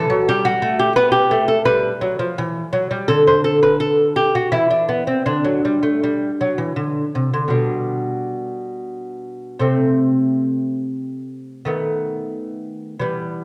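Set in a dark production with a reverberant recital-hall ambience, this short classical excerpt is a radiant, dance-like baroque-style piece in G major and 3/4 time, moving with rubato at roughly 79-89 BPM, where a solo lute, fingerpicked and up front, rings bright and delicate through its nylon double strings and occasional octave-doubled courses, shifting into a second section at 7.5 seconds that closes on a B7/D# chord.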